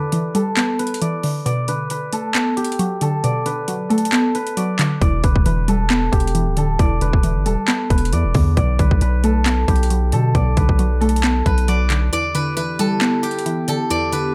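An echo-heavy digital ambience surrounds this dark, eerie half-time trap excerpt in E minor at 135 BPM, where a bright, silvery steel-string zither melody rides over a glassy, detuned wavetable pluck with a filter sweep, an overdriven, up-front trap kit of hard-clipped kick, metallic hi-hats and handclaps, a deep sine 808 bass that enters at 5.0 seconds and drops out at 12.1 seconds, and a warbling, lo-fi tape-like pad that arrives at 12.5 seconds over Em7 and Bm7 chords.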